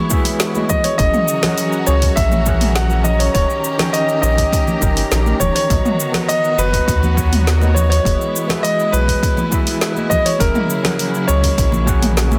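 Warm and relaxed, this sunset chillout excerpt moves at 102 BPM in a straight 4/4, cycling through Emaj7, F#7, D#7 and Bmaj7. A natural-sounding concert grand piano carries the melody in its upper-middle register, touched by a digital delay, while an overdriven tine electric piano, barky and gritty with fast tremolo, sampler grit and its own delay through a combo amp, fills in the accompaniment. A lush bowed string section holds smooth, vibrato-rich chords underneath. A punchy electronic kick and a deep house kit with a woody snare, dark hats, cabasa and toms enter at 0.1 seconds, with bright, hard-handed congas sitting in the background from 0.3 seconds. A round sine sub bass arrives at 1.0 seconds and sits up front, deep and sustained. Light reverb and a digital ambience frame a dense, heavily limited modern master.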